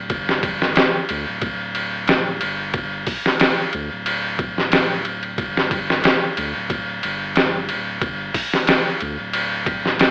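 A lightly swung 91 BPM groove in 4/4 drives this hypnotic, smoky trip hop excerpt, where an up-front, pitched-down sampler-style drum kit of thumpy kick, medium-tuned snare, hi-hat and ride cymbal sounds gritty and tape-warm over a deep, round sine sub bass held far back in the mix, all set in light digital reverb with vinyl crackle and an AM radio tint.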